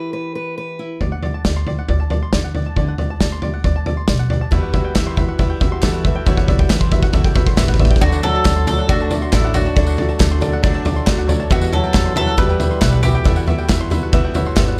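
A dark, warm production frames this uplifting, nostalgic indie folk excerpt, which opens on a bright fingerpicked steel-string guitar before a punchy, up-front indie drum kit with a drum fill, a woody pizzicato upright bass and a twangy banjo with slapback echo build from 1.0 s, joined by a jingly tambourine at 1.4 s; a shimmering twelve-string guitar, a deep-bassed grand piano and a reedy harmonium join at 4.5 s, followed by crisp handclaps, and from 8.0 s a double-strung mandolin with slapback echo carries the melody over a soft-attacked French horn second line with light vibrato.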